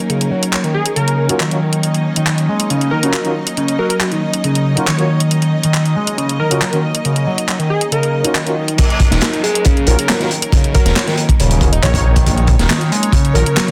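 Breakbeat at 138 BPM in Eb minor, this funky, raw excerpt opens on an Ebm7 bed of close, bowed strings pumping under sidechain, a screaming, guitar-like overdriven synth riff with phaser and tape-worn saturation, and bright-hatted garage drums with handclaps. Within the first seconds, a catchy detuned plucky lead filtered through an AM radio tone and mellow brass stabs roughened by 12-bit sampler grit join in, until a filter sweep builds to the drop at 8.8 seconds. There, a crunchy, dark small-room breakbeat kit hits up front, joined moments later by a thick, menacing detuned saw bass, in a dense, heavily limited mix with moderate reverb.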